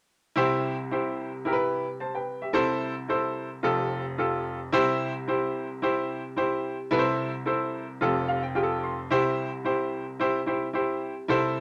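Soul piano piece, joyful and danceable, heard as a short cut from a longer performance in a straight four-beat feel. A lone upright piano carries everything from 0.4 seconds to the close at 11.6 seconds, ranging from deep bass notes up into the bright upper register. Its tone is clear and woody with short sustain, placed up front in a moderate studio ambience. The harmony cycles between C, Am over C and Fadd9, with a piano fill at 8.0 seconds leading into a new section that lands back on C at 9.1 seconds.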